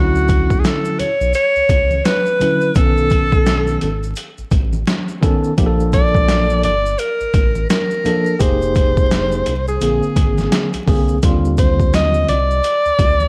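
Swung sixteenths in 4/4 give this cool, smooth jazz-hop piece its relaxed groove. It is carried by a gritty, pitched-down boom bap kit with a thumpy kick and overdriven, compressed hits, while very quiet, ringing maracas and congas sit beneath it from 0.2 seconds. Up front, a breathy alto saxophone plays a subtone jazz solo with vibrato and slapback echo over a clean tine electric piano, which stops at 12.4 seconds, and a sawtooth synth bass with ring modulation, moving through chords such as Dmaj9, Bbmaj7 and Fm11, all wrapped in a dark, warm production with light reverb, digital ambience and vinyl crackle.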